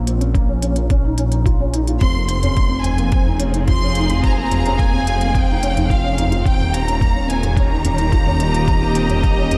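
A dreamy, reverb-soaked mix with a lush hall tail frames this cinematic, intimate piano-and-strings electronica at 108 BPM in straight 4/4, moving through Bbm, Fm and Eb. A soft, boxy felt-muted upright piano riff with chorus and tape echo opens over a deep, rumbling detuned saw bass that pumps with sidechain, while a crisp-hatted electronic kit with toms and a muffled, thumpy pitched-down kick carry the beat. At 2.0 seconds a focused chamber violin section brings a vibrato melody with tape echo, above a smooth, bowed studio string section holding sustained chords that also pump.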